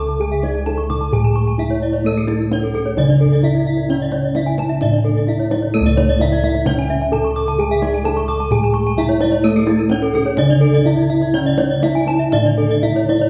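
This shimmering, brilliant excerpt of Balinese gamelan opens at 0.0 s with bronze metallophones and bossed gongs sounding together in C# pelog, moving at 130 BPM in a straight 4/4. A metallophone struck with a wooden mallet carries the ringing melody in the middle register, while a second, very quiet metallophone played with padded disc mallets gives a mellow, soft accompaniment lower down. Two more metallophones played with horn mallets spin arpeggios higher up: one brilliant and airy, the other boxy and warm. Across the metallophones, the paired tuning produces shimmering beats. The bossed gongs sit up front with a round, beating bass, and a tight kendang played with soft hands stays in the background from 0.1 s. The whole excerpt is one continuous section lasting 13.3 seconds, bathed in the long reverb of a church or concert hall.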